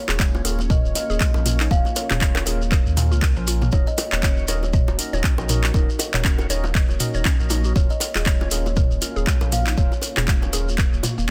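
A deep, up-front electronic kick drives this swung, spiritual afro house excerpt alongside a produced drum kit with metallic hi-hats, handclaps and toms, tight high-tuned bongos played with hard hands, and a grainy, saturated shekere. A round analog bass with a filter sweep pumps beneath a woody kalimba melody that rings through a dub echo, while a percussive FM mallet-like pluck spins arpeggios with chorus and echo. In the background, a fat tonewheel organ stabs through a slow rotary speaker and a moody, detuned sawtooth pad sustains evolving chords, all in a dry, dense and heavily limited mix.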